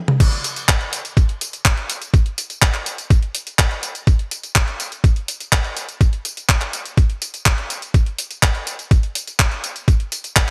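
A straight 4/4 feel drives this short italo disco drum excerpt, cut from a longer piece, with a danceable and nostalgic mood. It opens on a drum fill and a brief stop before the clean 12-bit drum machine comes in at 0.1 seconds, followed by the electronic kick at 0.2 seconds; both carry on to the end at 10.5 seconds. The drum machine supplies crash cymbal, handclaps, hi-hat, tambourine and toms with a sampler-style character, overdriven and treated with gated reverb, giving it a gritty, punchy edge. Underneath, the electronic kick is thumpy and sits a little louder than the drum machine. Both parts sound re-recorded in a small room and are placed up front, and the overall sound is dry, with little room ambience around it.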